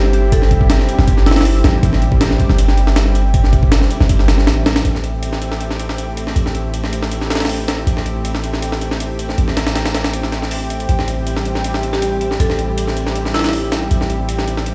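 A gritty, compressed breakbeat kit sits up front in this nostalgic yet frenetic drum and bass and jungle excerpt, with a thumpy kick, a high-tuned snare and hi-hats carrying studio reverb and high-pass filtering, entering at 0.1 seconds. Beneath it, a deep, mellow 808-style bass holds long sine tones with a fast attack and a gradual decay, just as prominent as the drums. A lush, detuned unison pad blends sawtooth and square waves into thick, bright sustained chords, treated with chorus and a slow attack over an Am7 harmony. A woody rosewood marimba struck with medium hard mallets adds a short melody in the background, heard at the very start and again from 11.9 to 13.5 seconds, trailed by dub echo. The whole mix sounds as if played on a big sound system in a bare stone room, giving it a light, reverberant space.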